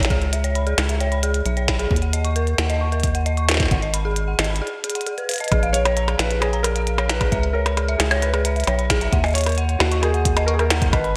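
Bright, 1980s-style digital production sets this cerebral, intricate IDM excerpt in a lush hall reverb with a digital ambience. An eerie, inharmonic FM synth bell runs arpeggios throughout, its detuned tone treated with chorus, phaser and delay and fading on a long release. Beneath it, a rubbery, hollow square-wave bass bounces up front with a fast-attack filter pluck, while a deep electronic kick anchors a glitchy kit of tiny snare, clicky hats and percussion blips treated with gated reverb. After a short break at 4.6 seconds, a soft, felt-muted upright piano enters at 5.7 seconds with an intimate, delayed melody. The harmony drifts through dark minor colours, moving from Abm to Bbm, Dbm7 and Ebm7.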